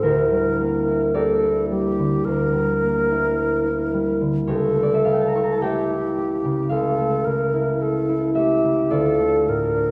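The rhythm moves in a slow, freely breathing rubato over a 4/4 metre, giving this romantic classical duo for flute and harp a yearning, melancholic cast. The concert flute carries the melody from start to finish within a narrow span from G4 to Bb4, its tone airy and hollow with gentle vibrato, a soft attack and rolled-off highs. Beneath it, the concert harp accompanies across a broad range from C#2 to C#6, thumb-plucked and ringing, with an acoustic warmth. Both instruments sit up front in a wet scoring-stage reverb with a 1.8-second decay, and the tuning rests at A4 = 435 Hz. The harmony passes from Em7b5/D through A7/C# at 4.5 seconds to Dm at 8.9 seconds, and this short passage is cut from a longer piece.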